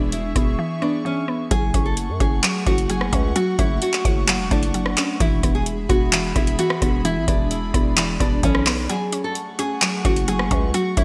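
A half-time trap groove drives this dark, hard-hitting hip hop excerpt, with a booming analog drum machine of deep kick, metallic hi-hats, handclaps and rim clicks sitting up front, overdriven and treated with gated reverb. The drums come in at 0.1 seconds and drop out from 0.6 to 1.5 seconds, and a short break arrives at 8.9 seconds. Beneath them, a growling 808-style bass adds a buzzy, saturated low end with a fast attack that decays. A bright, fingerpicked nylon-string guitar carries the classical-tinged melody, while a woody, round mallet-like synth pluck with chorus fills in the accompaniment. An airy, breathy pad with a vintage warble holds soft sustained chords behind them, and the whole mix has light reverb and a bright 1980s-style digital sheen.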